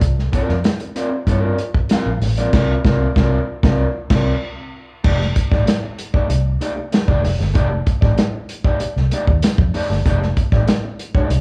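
Funky and playful, this fragment of a longer funk piece moves at a straight 96 BPM in 4/4, centred on F mixolydian and tuned to A4 = 442 Hz. Up front, a lo-fi acoustic soul drum kit sounds dry, warm and muffled, with a tight kick, a medium-tuned snare, a hi-hat, a dark crash cymbal and a rolled-off top. A vintage fingered electric bass, foam-muted and amped, carries a round, punchy bass line in a low register. From 0.3 seconds, an electric guitar at the edge of break-up adds slightly gritty, fingered accompaniment over a C9sus4 chord. The band plays an accent together from 2.5 seconds, and the harmony moves to F13 at 5.0 seconds. The band plays live in one room with a moderate large studio reverb, and a cassette-tape character colours the whole mix.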